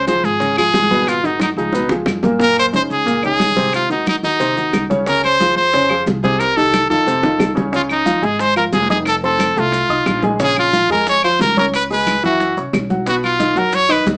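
A straight, danceable salsa groove in 4/4 comes from background congas struck with hard hands, round low-tuned bongos, woody claves entering at 0.6 s and grainy, mellow maracas, with drum fills at 1.4 and 7.1 seconds. A thumpy pizzicato upright bass and an intimate baby grand piano, with audible action noise and short sustain, carry the passionate harmony, which moves into a second section at 7.7 seconds. Up front, a brilliant, close-miked solo trumpet plays the melody with forceful, punchy vibrato in a moderate studio ambience, all heard through a small-speaker sound.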